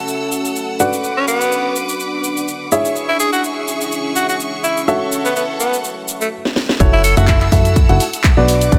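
A light reverb and a slightly detuned, woody upright piano with audible action noise set an intimate tone in this feel-good, uplifting piano house excerpt at 125 BPM, with a gentle swing on the sixteenths. The piano's riff pumps against a clear, bowed string section holding sustained chords and a deep, moody pad with chorus and a slow attack, all three breathing with sidechain pumping. From 0.1 seconds a tape-warm house kit of cabasa, handclaps, hi-hat and a cracking snare drives the groove, and a raspy, gritty tenor saxophone carries the solo melody from 1.2 seconds to 7.5 seconds, its bright tone trailing dub echo, as does the piano. The chords move from A6 through Bm and C#m back to A6 before a drum fill leads into the drop at 6.8 seconds on F#m7. There a punchy electronic kick and a funky, plucky analog bass with a fast attack and decaying notes arrive up front, giving the closing bars a heavier low end.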